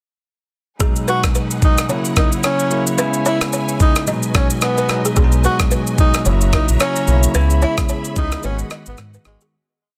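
A breathy tenor saxophone carries the melody in this breezy, romantic afrobeats piece, singing a syncopated pop-style hook with light vibrato. Underneath, a bell-like tine electric piano sits up front, pushing bright, clean chords in drop2 voicings with grace notes. A lush studio string section holds sustained chords with vibrato and portamento, while a woody, buzzing balafon plays an interlocking repeated figure in the background. The gritty, pitched-up sampler-style drum kit sets a 110 BPM groove with swung sixteenths, built on a thumpy kick, syncopated rim clicks and shaker, and its snare is softly clipped. A deep sine sub bass with an octave enters at 5.2 seconds with a bouncy, syncopated line over the chords that cycle from B6 to F#7 to C#m7 to G#m7 in B major. Light reverb and a dense, heavily limited modern master frame the piece, which fades out from 7.3 seconds into a break at 8.4 seconds.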